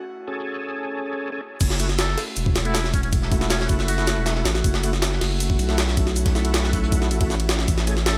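A compressed, pitched-up jungle sampler-style drum kit with a thumpy kick and high-tuned snare drives this nostalgic, raw drum and bass piece at 158 BPM in F# minor, arriving at 1.6 seconds alongside a deep, saturated sine sub bass and a crunchy breakbeat kit set back in the mix, while an airy, breathy pad and an overdriven tonewheel organ playing stabs through slow rotary speaker and dub echo carry the opening over a filter sweep, and a buzzy, muted jazz-style trumpet solo with vibrato enters in the background at 2.0 seconds.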